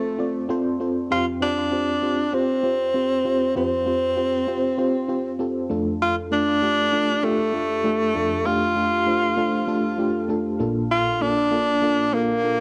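A bright, close-miked tenor saxophone carries the pop-style solo melody up front, its vibrato and scooped notes colored by analog delay. Beneath it, an FM electric piano with tremolo and cassette tape coloring plays full-bodied, dark chords with a fast attack, decaying tones and a noise layer, moving through F, Fsus2, Dm/F and Bbmaj7. This uplifting, glossy pop fragment sits at a straight 98 BPM in 4/4 and is cut from a longer piece, set in moderate spring reverb and studio ambience on a home cassette recording.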